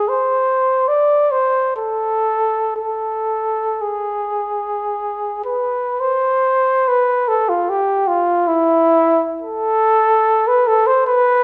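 Mournful and meditative, this brief classical passage for unaccompanied trumpet is cut from a longer piece and unfolds freely in three, with an expressive rubato feel. The lone trumpet sits up front from 0.0 to 11.4 seconds, its dark tone shaped by soft attacks, light vibrato and a smooth top, all in a classical style. Its line stays within a modest span from E4 to D5. A second section begins at 6.0 seconds, following the opening section. A moderate recital hall reverb gives the instrument an open, resonant halo, while a faint mains hum lingers beneath the performance.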